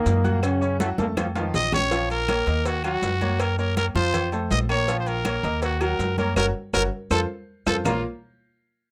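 A dry, close 1970s-style studio sound frames this fiery, passionate salsa excerpt in Bb harmonic minor at 162 BPM, where a punchy, tight trombone section states the melody until a raspy, growling trumpet solo takes over at 1.6 seconds, over a brilliant, worn baby grand piano with audible action noise, a thumpy, dark pizzicato upright bass up front, and background congas, cowbell and bongos, ringing timbales and agogo bells, grainy maracas and very quiet woody claves, with drum fills and a band accent driving the Gb–F turnarounds back to Bbm.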